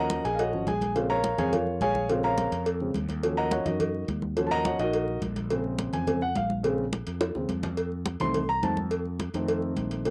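A warm concert grand piano takes the lead up front with deep bass and short sustain, its cassette-tape grit and plate reverb coloring a sultry, sophisticated Afro-Cuban jazz excerpt over Ebm7, Bbm7 and F7 chords, supported by a bright, amped fretless electric bass, thick-skinned congas, and round, low-tuned cowbell and bongos played with soft hands, with a drum fill from 7.2 to 7.8 seconds in a moderate booth ambience.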